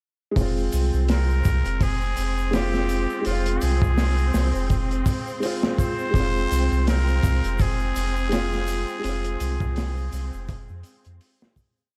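A swung 83 BPM trip hop groove in F minor starts at 0.4 seconds, built on a crunchy, saturated breakbeat kit with a punchy kick and a looped, edited break, a deep, round sub bass riff, and a faint, dry egg shaker. A felt-muted upright piano holds soft, vintage chords with a harmonic tremolo and 12-bit sampler grit, while a bright symphonic string section sustains a lush, biting high note. From 1.1 seconds a nasal, raspy trumpet with a straight mute plays a jazz-style motif-based melody through tape echo, all in a dark, melancholic, cinematic small-room mix that fades out from 8.1 seconds.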